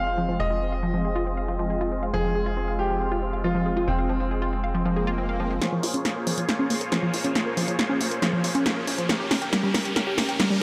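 Uplifting trance at 138 BPM in a straight 4/4, bittersweet and emotional, cut from a longer piece, moving from F minor through B-flat minor seven to G diminished under a moderate, lush hall reverb. A clear, open concert grand piano plays a second line with digital delay until 5.5 seconds, while an airy, evolving filtered supersaw swell holds low-passed chords, a tight, driving sequencer bass with ring modulation pulses underneath, and a round, detuned analog pluck spins chorused arpeggios with vintage 12-bit grit, delay and filter sweeps throughout. From 4.9 seconds an electronic swell and riser effect enters in the background, swelling first. From 5.6 seconds a punchy, tape-warm analog drum machine comes up front with hi-hat and snare, building with a drum fill as the riser climbs.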